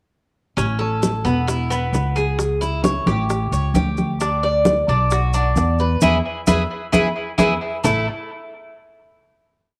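Relaxed and sunny, this short, complete piece of Cuban son and guajira moves at an easygoing, straight pulse. Up front, the acoustic Cuban tres picks an arpeggiated guajeo on metallic, double strings, some octave-doubled, touched with tape echo. Beside it, the woody, thumpy pizzicato upright bass plays a tumbao that anticipates the chords as they pass from Aadd9 through C#m, A7 and Bm to E. In the background, thick-skinned, medium-tuned congas mix slaps and open strokes, while tight, high-tuned bongos keep steady eighths with a hand bell, and grainy, mellow maracas add a soft shake. The band hits an accent from 6.0 seconds, and the piece settles on a final A5 chord at 7.8 seconds, all set in a moderate spring reverb.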